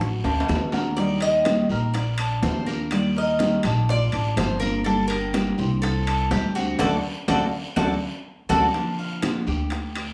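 A straight 4/4 groove at 124 BPM drives this sultry fragment of Cuban son and guajira in G minor, where a metallic, double-strung tres carries the melody until 8.7 s over a second tres picking arpeggios, a bright fingerpicked nylon-string guitar and a dark, woody pizzicato upright bass up front, while very quiet thin-skinned congas, round low-tuned bongos, a raspy distant guiro, ringing metal-shell timbales and saturated claves sit beneath, with drum fills at 0.2 s and 8.3 s and a band accent from 6.8 s as the chords move from D through Eb, Bb, Gm and Csus2 before settling on Gm7, wrapped in moderate large-studio reverb.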